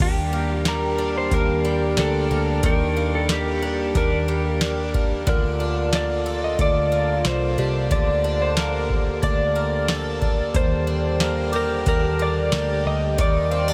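A slide guitar, slightly broken-up and compressed, carries the melody through lush chorus and analog delay from the start, over distant, dark French horns holding sustained chords, a bright, octave-doubled twelve-string acoustic picking shimmering arpeggios, a round, foam-muted bass up front, and a booming analog drum machine with a deep kick, crisp snare and metallic hats. This ethereal, floating dream pop piece moves at 91 BPM in Eb lydian, drifting between Ebmaj7 and Bbmaj7. A very quiet, warbling FM synth bell adds a pure, decaying texture from 0.7 seconds, and the whole mix is soaked in a huge, dreamy reverb in a brief cut from a longer piece.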